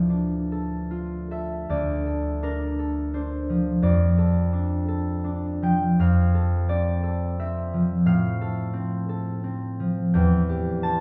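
Heard from further back in a reverberant recital hall, this short classical cut from a longer piece features a solo concert harp with a warm, ringing, thumb-plucked tone that still sits up front. Dreamy and graceful, it moves in an unhurried 3/4 at 85 BPM with rubato and uneven beats, spanning D2 to A5 in D minor. After a brief opening, a new passage begins at 1.7 seconds, and the harmony drifts from D minor through F major toward a closing C chord over E.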